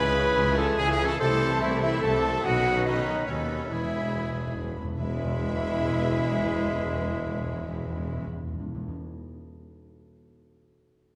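A straight three-beat pulse carries this short cut from a heroic adventure film score, and the mood is soaring and heroic. A studio violin section states the melody with smooth, even vibrato, while a lush symphonic violin section, a hollow concert flute and a bright solo oboe trace second lines alongside it; the oboe drops out at 4.8 seconds. Beneath them, a very quiet viola section supplies accompaniment, a dark, distant French horn section and a warm, very quiet trombone section hold sustained chords, a mellow trumpet adds stabs, and a ringing, fingerpicked concert harp plays quiet arpeggios. The low end rests on a rich cello section, a woody double bass section and a tuba. Timpani struck with hard mallets enter at 2.4 seconds and play a fill from 3.7 to 5.0 seconds as the harmony arrives home on E. A generous scoring-stage reverb gives the ensemble a broad, cinematic sense of space.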